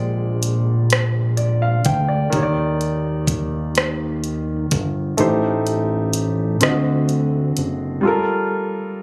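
Late-night and sultry, this slow R&B excerpt moves in 6/8 at 42 BPM in dotted quarters, with a straight feel in G minor and tuning set to A4 = 438 Hz. A warm grand piano sits up front as the accompaniment, moving through Bb13, Ebmaj7, Am7b5 and D7b9 before arriving on Gm9 at 8.0 seconds. Beneath it, a fat analog bass blends sawtooth, square and sine tones into a thick, saturated, wave-folded sound with a filter sweep, a fast attack and mellow sustained notes. The electronic drum kit is also placed up front, with warm hi-hats, a rim click and a knocking kick that drops out at 5.2 seconds. The whole passage sounds as if it was captured on a phone in the room, with club reverb adding a sense of space.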